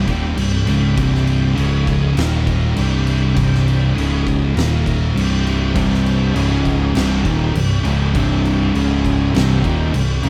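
Two thick fuzz guitars anchor this heavy, hypnotic stoner and doom metal passage, both dark and distorted as they grind out a low riff from the first second, sitting in the background of the mix. Beneath them, a picked electric bass carries a round, amped, overdriven tone, and an oversized low-tuned drum kit enters at 0.1 seconds with a boomy kick, a fat snare and crash cymbal, all ringing in a stone room that pumps around the hits. High above the riffs, a bright tonewheel organ holds full, shouting, clean sustained chords, colored by a slow rotary speaker and chorus vibrato. At 5.7 seconds, a sludgy, double-tracked guitar with a warm overdrive joins the riff, thickening the low end. The harmony rocks between a minor chord and a handful of power chords, and light reverb gives the sense of a band playing live together in one room, in a passage cut from a longer piece.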